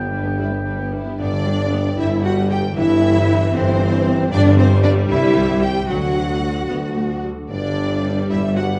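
A rich cello section stands out most in this playful, mischievous film cue, its expressive bowing coloured by vibrato and portamento, in a short cut from a longer piece in G major, moving in 6/8 at 76 BPM. Beneath it, a focused, distant double bass section and a clear, soft-attack tuba share the bass, while a viola section with a smooth top supplies accompaniment in the background. Two violin sections carry the upper lines: a lush one holds the melody from the background, and a second section adds an even, bowed counter-line. A roomy solo oboe with light vibrato sounds a single G5 in the first 0.9 seconds, and a fingerpicked concert harp rings out arpeggios from G2 to C6 alongside. The chords move from G through C/G and back to G, then on to C and D before settling back on G at 7.5 seconds, all within a dark production and a wet scoring-stage reverb.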